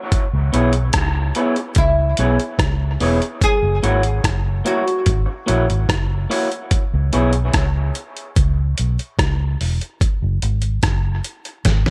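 A lightly reverberant, spacious mix opens this short dub reggae cut from a longer piece, set at 73 BPM in C# dorian with a deep mood. A dusty, gritty sampler-style drum kit with a thumpy kick, rim clicks and hi-hat sits up front beside a dark, round, foam-muted fingered bass. A twangy, slightly broken-up electric guitar plays accompaniment through dub echo until 7.3 s, while a woody, double-strung oud carries the melody with its own echo between 1.8 and 6.3 s, and the chords move from C#m7 to F#7 before the drums close on a fill at 11.6 s.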